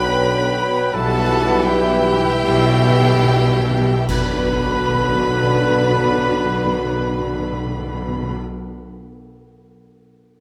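A moderate concert-hall reverb surrounds this brief cut from a slow, rubato orchestral movement in B minor, moving at roughly 34-44 BPM in 4/4 with a yearning, elegiac mood. A close chamber violin section carries the melody with expressive vibrato, while a more distant studio violin section, a pure flute section, a clear clarinet and a warm oboe sit in the background as second lines. Bassoon and a very quiet viola section supply accompaniment, a mellow, roomy French horn section holds soft sustained chords, a very quiet trumpet adds stabs, and a barely audible concert harp rings out arpeggios. The low end rests on tuba, a smooth cello section and a focused double bass section, with dry timpani on medium mallets playing a fill from 0.9 to 4.1 seconds as the tempo slows and the harmony moves from Bm to Em/B. At 4.1 seconds the music returns to Bm with a full ensemble accent, joined by dark clash cymbals and concert bass drum, which play until 7.2 seconds.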